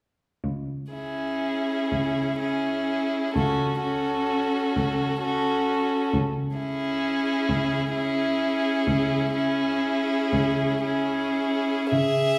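A classical slow movement for string quartet in 6/8 with elastic rubato, this elegiac, melancholic passage is cut from a longer piece. A single bowed cello opens the bass line at 0.4 s with a soft attack, expressive portamento and vibrato, and at 0.9 s two violins join, one singing a focused, vibrato-rich melody and the other weaving a smooth second line beneath it, while a clear viola holds its accompaniment on C#4. All four players sit up front within the lingering reverb of a church or concert hall.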